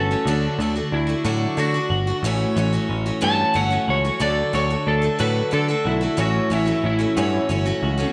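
Open-road and jangly, this rock excerpt in 6/8 features a slightly broken-up electric slide guitar soloing throughout, played with fingerpicks over a bright, boxy parlour acoustic guitar, a clean, twangy twelve-string electric riff bathed in spring reverb in the background, and a punchy, up-front picked electric bass, all set in a moderate echo chamber as the chords move between D and A6.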